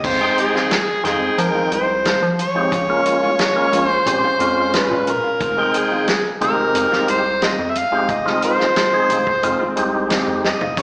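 Smoky and brooding, this short cut from a longer straight-eighth soul blues moves at 89 BPM in 4/4, sitting in F minor and cycling from Fm7 to Bbm7 and back. An overdriven, gritty harmonica carries the melody up front, its amplified tone marked by light vibrato, scooped notes and tongue slaps in a jazz-style solo with slapback echo. A percussive tonewheel organ with key click and a slow rotary speaker fills out the accompaniment from 0.2 seconds, while a clean, compressed electric guitar adds dark, fingered stabs in the background through lush chorus and slapback echo. Underneath, a rubbery, nasal square-wave bass bounces with a fast filter pluck, and a tight, acoustic soul drum kit with dark cymbals and a rolled-off top plays throughout, closing on a drum fill at 10.4 seconds. The whole thing sounds like a live gig heard through the venue's PA, with recital hall reverb and a small-speaker character.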